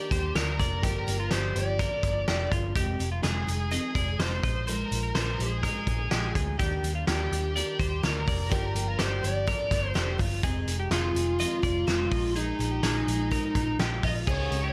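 A straight 4/4 groove from a loose, up-front indie drum kit with a fat snare and punchy kick drives this bright, breezy jangly indie pop fragment, where a foam-muted, dark vintage electric bass sits beneath a shimmering, octave-doubled picked twelve-string acoustic, a twangy, compressed twelve-string electric playing arpeggios, and a distorted, bluesy lead guitar carrying the melody, all held in a light reverb.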